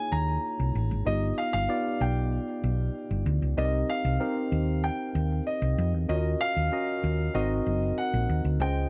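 A straight 4/4 groove drives this upbeat, urban slice of polished 1980s jazz-funk pop, cut from a longer piece and moving through lush chords such as Db69, G7b13 and Ebm7 before landing on Ab9. A round, punchy hollow-body electric bass sits dark and amped up front, while a worn, slightly out-of-tune tine electric piano, mellow and lightly overdriven through a combo amp with subtle chorus, fills in the accompaniment. On top, a concert grand piano with deep bass carries the melody high in its register, all heard in a small room ambience.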